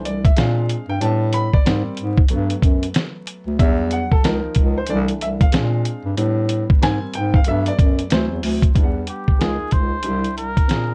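A relaxed 93 BPM groove in 4/4 swings its sixteenths, carried by a dusty, sampler-style soul drum kit whose thumpy kick, fat snare and hi-hat sit gritty and compressed at the front of the mix. This smooth jazz-hop cut, taken from a longer piece, has a dark bass clarinet holding down the low end with subtone, vibrato, soft attacks and scooped notes, a present, jazz-style voice also placed up front. A woody, vintage upright piano with short sustain takes a solo through the opening 8.8 seconds, moving through lush extended chords such as Bb9, A7sus4, Abmaj7, Gmaj7 and Em9. At 9.1 seconds a cup-muted trumpet enters with a soft, veiled, breathy melody, its light vibrato and smooth top lending a gentle jazz colour as the harmony shifts toward C#69 and Cadd9. The production is dark and close, with little reverb and a bed of vinyl crackle that gives the whole mood a hazy, late-night calm.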